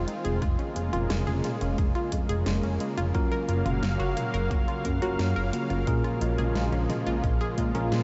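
A lush, detuned unison pad, a glossy synth bass and a round analog pluck start together in this moody, nocturnal synthwave excerpt in Bb minor at 88 BPM, the pad holding thick, warbling sustained chords up front with chorus and sidechain pumping. Beneath it, the chorused synth bass sits forward in the mix with a mellow pulse-and-sawtooth tone, while the pluck spins chorused, delayed arpeggios further back. A produced pop drum kit adds hi-hat, toms and a fat snare, and a punchy, layered electronic kick drum joins at 0.4 s. The harmony moves from Bbm7/F to Gbmaj7 at 3.1 s, where a clean tine electric piano, heard through a combo amp, enters in the background with delayed stabs, before settling on Bbm7. A huge ambient reverb soaks the whole mix, and the top end is rolled off for a dreamy haze.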